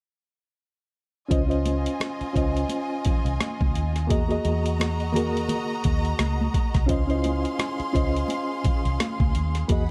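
Lush 1970s-style soul at 86 BPM with a romantic mood, this excerpt in Db major sets a gritty, thumpy, pitched-down sampler drum kit up front alongside a round, foam-muted fingered electric bass, a reedy, worn, slightly out-of-tune electric piano with overdrive and fast tremolo, a clear bowed violin section carrying a second line with vibrato and slapback echo, and soft-handed, high-tuned congas in the background, all entering at 1.3 seconds over Dbmaj9 and Emaj9#11 chords in a dark, dry production.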